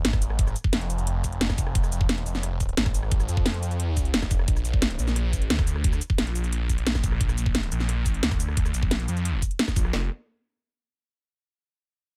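A swirling, thick detuned sawtooth bass opens this tense, dark technical drum and bass cut, sitting up front with phaser, overdrive and pumping sidechain, alongside a layered electronic kit of cabasa, hi-hat, rim click and snare that has a tape-warm, small-room character. A second produced kit of kick drum and cracking snare joins almost at once, placed up front, and the dry mix keeps the groove straight. The kits drop out near 9.9 seconds, the bass ringing on briefly as the excerpt moves into a short closing section.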